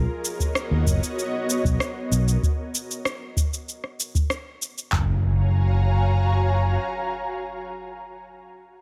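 Lightly reverberant and relaxed, this blissful sunset chillout fragment sets a growly, amped fretless electric bass, filter-swept over its first 2.4 seconds, beneath an ethereal pad of mellow, detuned sustained chords with chorus, tremolo and vintage 12-bit sampler grit, while an up-front, tape-toned electronic shaker and rim click join a soft analog rhythm box with deep kick and handclaps until a background electronic impact enters at 4.9 seconds as the harmony moves to a new chord.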